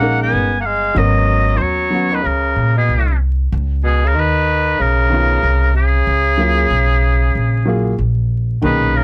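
A cool jazz-hop groove at 94 BPM in F# major with a swung sixteenth feel, this short excerpt puts a clear, vibrato-laden classical oboe melody up front over a tenor saxophone's jazz-style second line, a dark, mellow grand piano comping through Bmaj13, G#m11, C#7sus2 and F#maj9, and a woody pizzicato upright bass with tube saturation, all captured dry and gritty with vinyl crackle.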